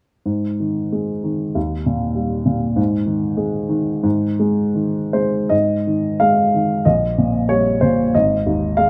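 Rubato in 2/4 and drifting between 74 and 101 BPM, this hopeful romantic character piece in Ab major for solo baby grand piano sounds natural and up front with a warm, short sustain, captured close and detailed in light reverb as it spans Ab1 to F5 from 0.3 to 8.9 seconds, moving into a new section at 5.5 seconds in this brief cut from a longer work.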